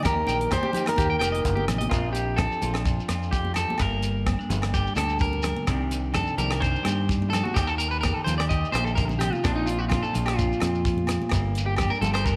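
Joyful and warm, this highlife guitar band excerpt opens with a full-bodied picked steel-string acoustic guitar melody with finger squeak, which gives way at 1.9 seconds to a dark, clean picked electric guitar solo, over twangy, slightly broken-up electric guitar arpeggios with tape echo, a punchy, up-front fingered bass, a tight, dry funk kit of hi-hat, kick and rim click, and background agogo bells, grainy shekere and very quiet, bright, high-tuned congas, all set in a moderate echo-chamber reverb.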